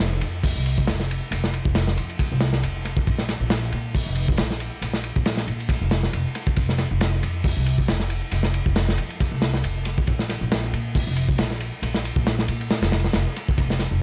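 A dry, echo-heavy mix with little reverb opens this funky, playful breakbeat excerpt at 137 BPM in 4/4, with a light 16th-note swing. Up front sits a crunchy acoustic breakbeat kit, saturated and gritty with a rolled-off top, tight kick, medium-tuned snare, dark cymbals on hi-hat and ride, and a dub echo trailing its hits. Beneath it, a woody pizzicato upright bass on steel strings plays from F1 to Bb2 for the full 14 seconds.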